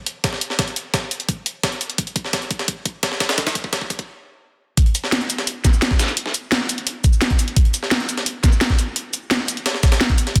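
A straight drum and bass groove in an aggressive, futuristic mood builds through a drum fill, stops at 4.1 seconds and drops at 4.8 seconds, with an up-front layered electronic kick that knocks, a drum and bass kit of cracking snare, bright hats and cabasa, and a gritty, compressed sampler-style breakbeat kit with filtered snare and hats, all sealed in light reverb and a dense, heavily limited modern master.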